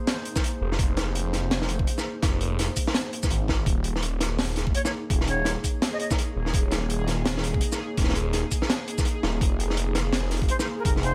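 A dark, moody analog pad with chorus and sidechain pumping opens this cinematic, spacious half-time drum and bass excerpt at 167 BPM, soon joined by a crunchy, gritty breakbeat kit with a high-tuned snare, a knocking electronic kick and a thick, swirling detuned saw bass with phaser up front, while a pulsing gated texture enters at 4.3 seconds and an airy, distant jazz flute with vibrato and dub echo drifts in at 4.7 seconds, all in a small room ambience.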